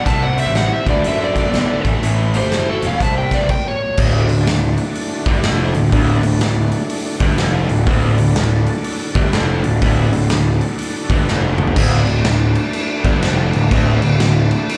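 Blues rock and southern rock from a power trio at 123 BPM in a swung 4/4 and D mixolydian, raunchy and swaggering, heard live through a club PA: a warm overdriven slide guitar and a twangy, compressed lead guitar in the background share the opening, the lead guitar dropping out at the stop at 3.5 seconds and the slide guitar at 4 seconds, while a double-tracked distorted guitar riff, a growly fuzz bass up front, a thick, very quiet tonewheel organ through a rotary speaker, and a gritty, punchy garage drum kit in a pumping stone room drive on, the drums taking a fill at 11.3 seconds.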